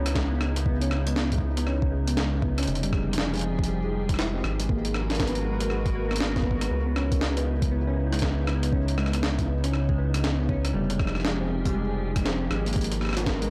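A rubbery, bouncy square bass sits up front with tube saturation in this eerie, cerebral IDM excerpt, beneath a glassy, warbling FM pad holding minor-ninth chords and a ringing, harp-like synth pluck spinning chorused, tape-worn arpeggios with digital delay, while a gritty, pitched-up jungle-style kit of hi-hat, rim click and snare swings its 16ths over a soft overdriven electronic kick, the whole blown-out mix lightly washed in digital ambience.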